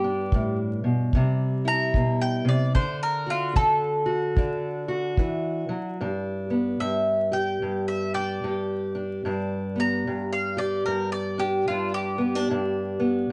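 A mellow, round mandolin with doubled strings and plate reverb carries the melody up front throughout this gritty, rollicking slice of acoustic country blues, set in G major at a swung 74 BPM. Beneath it a dark, boxy parlour guitar is fingerpicked in accompaniment, while a tight, smooth kick drum played with brushes sits close in a small room from 0.3 to 5.4 seconds. Light reverb and a layer of vinyl crackle give the cut from a longer piece a worn, old-record character as the same section repeats from 6.0 seconds.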